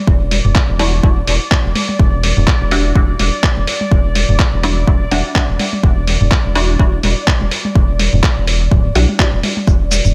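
A muted, resonant dub chord stab on an Em9 chord opens this hazy, hypnotic dub techno excerpt at 125 BPM in E minor, soaked in phaser and dub echo, while a bubbling, detuned texture of random filter steps holds a high sustained note with chorus, its own reverb and sidechain pumping. A deep, overdriven electronic kick sits up front beside a round, dark analog bass that pumps in the sidechain, joined by a muffled, pitched-down sampler-style kit of handclaps, hi-hat and shaker with a 56% swing on the sixteenths. Tape-warm electronic toms carry dub echo and pumping too; the stabs stop at 9.0 seconds and the kick at 9.8 seconds as the rest runs on to the cut.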